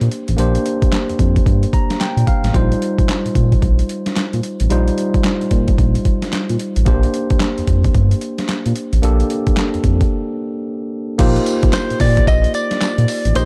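Gritty, overdriven boom bap drums with a thumpy kick, handclaps and tambourine sit up front in this bouncy, upbeat new jack swing R&B excerpt, riding over a smooth sawtooth synth bass and a bright, bell-like tine electric piano that plays a fill at 1.5 seconds; after a break at 10.1 seconds, a clean, scooped electric guitar with phaser takes the melody from 11.7 seconds, all set in a dark, warm digital ambience.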